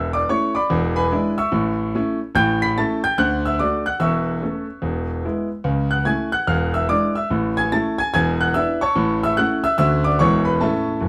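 A close, detailed recording places a single grand piano up front in a small room with moderate reverb. The piano's tone is clear and a little boxy, with a short sustain that keeps each note crisp. This is playful, exuberant stride jazz in 4/4 with swung eighth notes, played solo across a range from E1 to B6. The harmony moves briskly through bright major chords and dominant sevenths, passing through A7 to D, a tense E7b9, and a closing Dmaj7 at 9.8 seconds that turns to E at 10.2 seconds. The passage runs about 11.1 seconds, cut from a longer piece.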